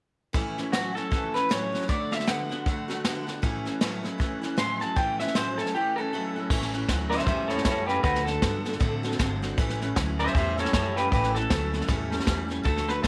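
This upbeat, retro rockabilly excerpt swings along in a brisk four, cut from a longer piece and moving between A and D chords. A brushed drum kit sits up front from 0.3 seconds, with dark cymbals, a medium-tuned snare and a boomy kick. A full-bodied dreadnought acoustic guitar is picked as accompaniment, while a bright, slightly broken-up electric guitar through a small old amp plays a low, picked riff coloured by ensemble chorus. From 0.7 seconds a second, fingered electric guitar carries the twangy lead melody high up the neck, its tone warm and a little gritty, sitting prominently in the mix with tape echo. At 6.5 seconds, as the second section begins, a woody, thumpy upright bass with gut strings joins in, playing pizzicato in a dark low register, all wrapped in a small room ambience.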